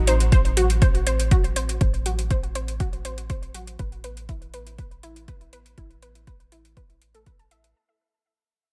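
A straight 4/4 pulse drives this dreamy, emotional progressive house fragment, where an up-front, overdriven deep kick and metallic hi-hats treated with overdrive sit beneath a tight, nasal sequencer bass with tube saturation and sidechain pumping, while a lush, detuned unison pluck spins bright arpeggios from E4 to A5 through digital delay and the same pumping; both synth parts carry a filter sweep over an F#dim/A chord that gives way to Asus2 at 3.8 s, set in a digital ambience as the passage fades out.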